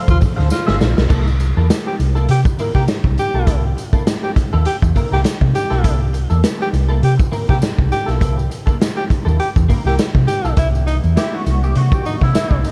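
A round, amped hollow-body bass sits up front in this energetic, playful funk excerpt, joined by a gritty, saturated garage drum kit with a swung sixteenth-note feel and a jingly tambourine in the background. A clean, twangy, picked electric guitar with analog chorus accompanies throughout, while a breathy, whispered tenor saxophone carries a second line through tape echo. A very quiet, lush bowed string section holds chords at the start and returns from 10.6 s, when the guitar takes a solo, all within a dark production.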